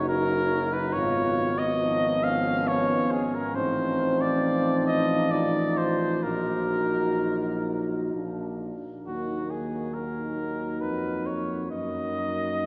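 Classical, hymn-like brass band music in Eb minor, elegiac and yearning, moving in a rubato 3/4 at 62-71 BPM, as an up-front flugelhorn with light vibrato carries the melody over a dark, soft-attacked French horn section on the second line, a vintage-toned euphonium and distant trombone in the background accompaniment, and a roomy tuba bass, all bathed in a wet cathedral reverb, with the harmony settling on Bb before turning back to Ebm at 9.1 seconds.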